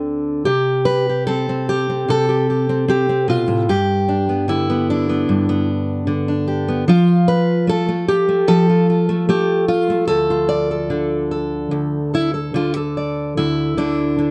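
Folk for solo fingerstyle acoustic guitar, this haunting, intimate excerpt moves at an unhurried 75 BPM in a straight 4/4, set in D dorian. A fingerpicked steel-string acoustic guitar carries the whole piece alone from start to finish, ranging from D2 up to D5. Its tone is warm and sits up front, with an auditorium-like sense of space and audible finger squeak adding a close, human detail. The harmony passes through C5, G and F before settling on D minor at 10.1 seconds, then the chords fall away at 13.4 seconds. A light reverb and dark production lend the brief passage a shadowed, lingering atmosphere.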